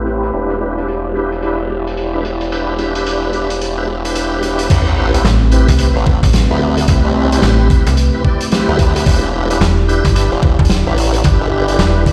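A knocking, tape-warm electronic kick lands at the drop at 4.7 seconds, joined by a very quiet sub drop, with a snappy, metallic FM bass entering at 5.2 seconds, in this gritty, swaggering glitch hop excerpt at 110 BPM in E minor with a swung 16th feel. Before that, a saturated, up-front wobble bass with a formant filter churns under a lightly overdriven tonewheel organ playing stabs through slow rotary speaker, chorus vibrato, digital delay and a filter sweep, while a moody, detuned analog pad holds sustained chords, both pumping with sidechain. A raw garage kit with a dark, rolled-off top supplies crash, hi-hat, rim click and a medium-tuned snare, the chords moving from Em7 to Am9 and back, all heard as if played on a big sound system in a bare stone room.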